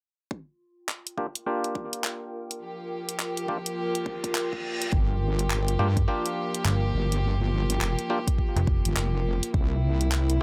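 A heavy, detuned wobble bass with chorus arrives at 4.9 seconds and dominates this gritty, funky glitch hop excerpt, joined briefly by a snappy, metallic FM slap bass from 6.7 seconds. Beneath it, a punchy layered electronic kick and a pop drum kit with handclaps and hi-hat drive a swung groove, while a clean, stringy clav with tape echo and low-pass filtering plays stabs over Gm7 harmony. A warbling, nostalgic lo-fi pad fades in from the start with sidechain pumping, bright, earthy chamber strings with 12-bit sampler grit hold sustained chords, and a reverse cymbal sweeps into the bass entry, set in a lightly reverberant space.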